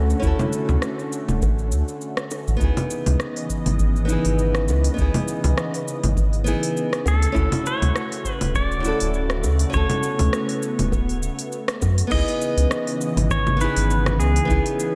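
Sunset chillout in C# minor at 101 BPM, this wistful, smooth excerpt sways with a gentle 16th-note swing while the harmony rocks between Dmaj7 and C#m9. A round, dark analog bass sits up front with a fast attack and sustained notes, joined by a deep, tape-warm electronic kick. The deep house drum kit adds layered congas, crash cymbal, rim click, shaker and smooth hi-hats, and very quiet, high-tuned bongos with soft hands sit close and dry until 11.9 seconds. A fingerpicked nylon-string guitar with slapback delay and a thick, detuned unison pad, bright with chorus and phaser and slow to bloom, carry the accompaniment throughout. At 7.1 seconds a clean, compressed pedal steel guitar enters with the melody, using slide and volume swells through its own slapback echo. A lush hall reverb gives the whole mix a big arena sound.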